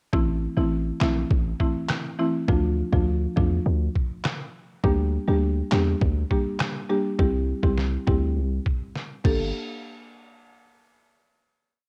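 Bouncy and hypnotic, this short dancehall piece moves at 102 BPM in G dorian, with a buzzing marimba struck with medium mallets playing syncopated chords over Am, Dm, Gm/D and C; its woody, dry, airy tone carries sidechain pumping and a cassette-tape colour. Up front, a hard-hitting 808-style bass delivers punchy, heavy sine lows with a noise layer, fast attack and slides, while a gritty, pitched-down trip hop sampler-style kit plays a dancehall beat of a thumpy syncopated kick answered by a clap-layered snare, with rim clicks and crash cymbal. A drum fill at 9.0 seconds leads into a final hit from 9.5 seconds, all set in a home-recorded cassette sound with digital ambience.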